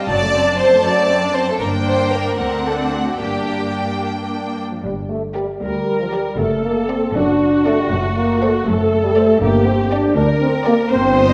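A stormy, urgent classical-period movement for orchestra in G minor begins at 0.0 s, with a focused violin section carrying the melody over lush, distant violas. At 0.1 s a dark, up-front second violin line and bowed cellos and double basses join to supply harmony and bass in a quick, rubato 6/8 at 72-82 BPM. At 4.7 s a mellow French horn section enters up front with sustained chords, and at 9.4 s a very quiet timpani played with soft mallets adds a round G2 under the G minor chord. A wet scoring-stage reverb surrounds this passage, which is cut from a longer piece.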